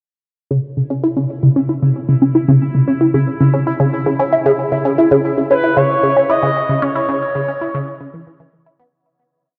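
Heard through a huge, wet reverb and the worn, warbling drift of old cassette tape, this short, complete piece of ambient, sequencer-driven space music feels expansive and hypnotic. It moves at 114 BPM in a straight 4/4, resting on a single C# minor chord. Up front from 0.5 seconds, a juicy, squelchy blip pluck with a detuned sawtooth and triangle core, ring modulation and a fast attack repeats a 5-step loop that drifts against the bar, colored by phaser and tape echo while a filter sweep runs across its resonant tone. Beneath it, a pulsing, tempo-synced gated texture of detuned triangle unison holds a bright high note, rising slowly in a fade-in and sustaining in chorus and built-in reverb. At 5.5 seconds a smooth, expressive portamento lead enters, its sawtooth voice shaped by a moving notch, soft attack, vibrato, chorus and tape echo as it sings a freely wandering melody. A fade-out from 6.1 seconds carries the piece to its close.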